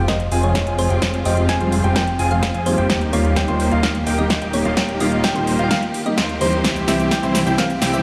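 A straight 4/4 pulse at 128 BPM drives this euphoric, anthemic festival progressive house build-up in F minor, where a round, tine-like FM pluck with chorus and dub echo carries the melody over a soft, felt-muted upright piano, lush background strings, brilliant baby grand arpeggios and huge detuned supersaw chords under a filter sweep, all pumping against a fat analog bass, while a punchy big-room kit with metallic hats plays a drum fill beside a very quiet kick, a barely audible riser enters at 6.6 s as the chords move from Fm through Eb to C, and the whole mix sits in a large, reverberant bare room.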